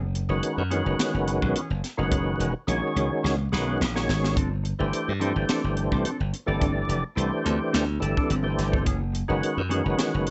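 Slick and nocturnal, this electric jazz fusion cut moves at 107 BPM in 4/4 with a light sixteenth-note swing, shifting between F#9sus4 and G9sus4 chords. Up front, a bright, punchy slap bass and a fat, lightly overdriven tonewheel organ with key click, chorus vibrato and a slow rotary speaker carry the accompaniment, while a crisp, airy fusion kit with a high-tuned snare and punchy kick plays a drum fill from 3.2 to 4.4 seconds. A dark, clean electric guitar with lush chorus adds stabs from the background, all set in light reverb with a dim, rolled-off top end.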